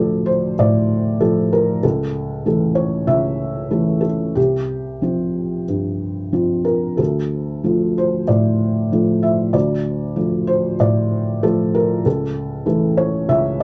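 Wistful and melancholic, this short neoclassical minimalist fragment is cut from a longer piece and features a lone felt-muted upright piano playing with a loose, rubato feel across 13.6 seconds. The thick felt gives the instrument a soft, dark, intimate tone, and it sits close and up front in a moderate booth ambience whose top end is gently rolled off. The harmony moves from Dm through A/C# and Csus4, then returns to Dm before settling again on A/C# at 12.1 seconds.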